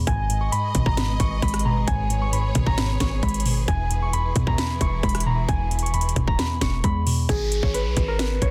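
A half-time trap groove from an overdriven, up-front drum kit with a hard-clipped kick, sharp snare and metallic hats drives this melancholic, menacing hip hop excerpt, as a punchy 808-style bass, a ringing, thumb-plucked concert harp melody with digital delay, a warbly, dusty, lo-fi pluck with chorus and lush, bowed symphonic strings play until the pluck and strings stop at 7.3 seconds and an electronic downlifter closes out the dense, dry mix.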